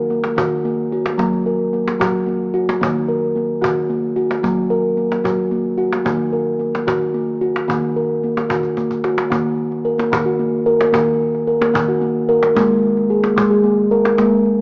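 A worn, warbly cassette sound with a small-speaker tone and an echo-chamber reverb frames this gentle, hypnotic world-meditative excerpt in 6/8, where a round, ringing steel tongue drum struck with firm rubber mallets plays bright, airy arpeggios up front over a woody cajon with faint snares, moving between Ebm and Gb chords before a drum fill at 8.6 seconds leads into a new section at 9.3 seconds.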